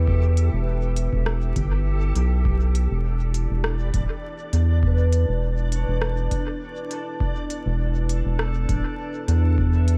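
Ambient dub with a meditative, spacious mood, built on a single Em7 chord, where a round, up-front analog bass and a deep, tape-warm electronic kick anchor a dark, chorused pad, a fingerpicked concert harp playing arpeggios through a low-pass filter sweep and tape echo, a reversed, dreamy granular texture, and an electronic kit of smooth hi-hats and rim clicks set in dub echo, all over vinyl crackle.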